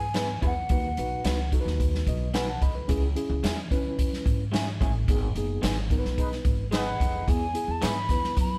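An uptempo 1960s-style soul groove in E major at 110 BPM opens with a breathy silver concert flute phrase over a reedy electric piano with fast tremolo and a woody, dark pizzicato upright bass, all heard as a band playing live in one room with light reverb. A swinging big-band drum kit sits up front, its punchy kick and medium-tuned snare giving the danceable, uplifting feel its drive, while an electric guitar through a small old amp adds slightly broken-up, compressed stabs. The electric piano steps forward with a fill from 1.8 to 2.9 seconds as the chords move from E and B to C#m and then G#m, where a band accent begins. A mellow horn section with vintage vibrato briefly carries a second line, and the close-miked flute, straight in tone and a little unsteady, returns at 6.8 seconds, shortly before the harmony settles back on E. Tambourine and group handclaps, saturated and tucked in the background, join near the close of this excerpt from a longer piece.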